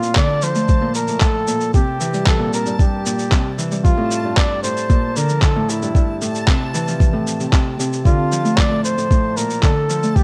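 A dark, gently reverberant production frames this hopeful, delicate folktronica excerpt in Bb lydian at 114 BPM, where a warm, jazz-style flugelhorn carries the melody with light vibrato and scooped notes over mellow, fingerpicked Celtic harp arpeggios that ring up front through digital delay, while a soft, tape-warm electronic kick sits forward, muffled, pitched-down electronic shaker and handclaps add an overdriven grit, and a bright, dreamy backwards swelling texture hovers in the background from 0.3 seconds as the chords move from Bbmaj7 through C7, Gm9 and Fmaj9 back to Bbmaj7.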